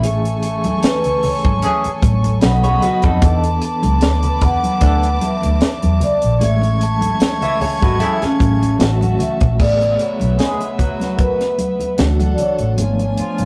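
Romantic and smooth, this lush 1970s-style soul passage in A major moves at a relaxed 75 BPM with a gentle sixteenth-note swing, its mellow soft-mallet vibraphone carrying the melody over an earthy bowed violin section, a gritty, reedy electric piano with medium tremolo, and a dark, round, foam-muted fingered bass. A tight funk kit with a high-tuned snare sits up front beside thick-skinned congas in the background, while a distant, roomy horn section adds stabs from 1.6 s and a slightly broken-up guitar riff through a small old amp appears between 2.6 and 8.8 s. The rough rehearsal-room recording has a short, wet small-room reverb, and the harmony drifts from Amaj7 through B7 and E7sus4 before turning toward D9 and a tense C#7b9b13/G# near the end of this fragment of a longer piece.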